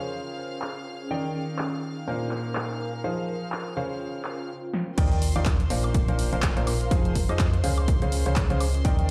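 A clear, up-front baby grand piano riff with dub echo drives this joyful, uplifting piano house excerpt at 124 BPM in Eb major, swinging over a punchy analog drum machine of overdriven snare, handclaps, hi-hat, shaker, woodblock and crash, all softened by low-pass filtering, while an earthy violin section holds sustained chords and an ethereal, chorused pad sits in the background, both pumping with the sidechain. After a drum fill at 4.7 seconds, the drop lands at 5.0 seconds, bringing in a dry overdriven kick, a round, dark FM bass and a very quiet sub drop as the Dbmaj7, Ebmaj7, Bbadd9 and Fm7 chords cycle on. The mix carries light digital ambience and a large studio reverb, as if played on a big sound system in a bare room.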